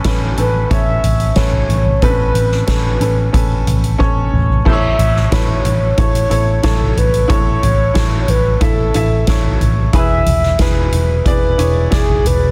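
Piano-driven pop with a hopeful, uplifting mood, built on a woody, boxy upright piano, a soft-mallet drum kit with dark cymbals and a boomy kick sitting up front, and a round, foam-muted picked electric bass, while a mellow horn-like synth lead with chorus, vibrato and a warbling vintage tone carries the melody from 0.4 s, with a drum fill at 4.0 s leading into the second section, set in a small room with a dense, heavily limited modern master.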